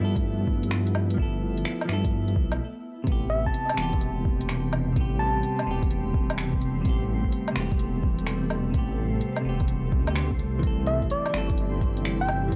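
This future garage excerpt sets a ghostly, melancholic mood at 127 BPM in 4/4, with a 66% swing on the sixteenths, in A minor and tuned to A4 = 438 Hz. A deep, rumbling detuned saw bass sits up front with saturated sustain, while a clean electric guitar, picked and compressed, carries tape echo and pumps against the kick alongside an ethereal, airy pad that hovers in the background with ensemble chorus and its own reverb. A reversed, granular texture adds a bright, dreamy haze behind them, and a soft, overdriven electronic kick anchors the groove with an organic electronic kit of finger snaps, smooth hi-hats and woodblock, both re-recorded in a small room. After a brief stop at 2.6 s, a round, gentle FM lead with keys-like decay, vibrato, chorus, analog delay and vintage 12-bit sampler grit enters at 3.3 s and returns at 10.9 s. The harmony moves from G13 to Am9 and on to C6. The sound is dry and gritty, with transformer saturation, vinyl crackle and a dusky top end that rolls off above 7.5 kHz.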